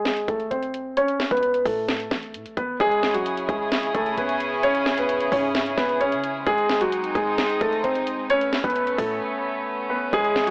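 A filtered grand piano with a deep low end carries a brooding melody through a sweep over the first 2.8 seconds, joined by a mellow, boomy 808 bass sitting in the background and a gritty, sampler-crushed trap kit of hard-clipped kick, sharp snare and metallic hats, before soft, floating bowed strings arrive at 2.8 seconds with sustained chords in C# minor in this menacing half-time trap cut from a longer piece at 131 BPM, ending on a brief break at 9.2 seconds, all in a dry small room with the lo-fi sound of an AM radio.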